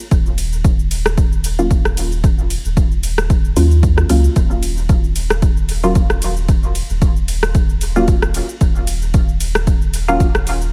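A punchy, overdriven electronic kick sits up front in this cavernous, nocturnal dub techno fragment, cut from a longer piece and set to a lightly swung sixteenth-note feel. Beneath it, a soft, round sub bass built from triangle and square waves pumps against the sidechain, with a fast attack and sustained notes. A layered deep house kit adds cabasa, metallic hi-hats, ride cymbal and rim clicks, roughened by overdrive and trailed by dub echo. At 1.6 s a muted, detuned sawtooth chord stab enters on a single minor-seventh chord, its mellow filter pluck decaying through chorus, phaser, sidechain pumping and dub echo while a filter sweep runs across it. A digital ambience surrounds the whole mix in a deep, shadowy space.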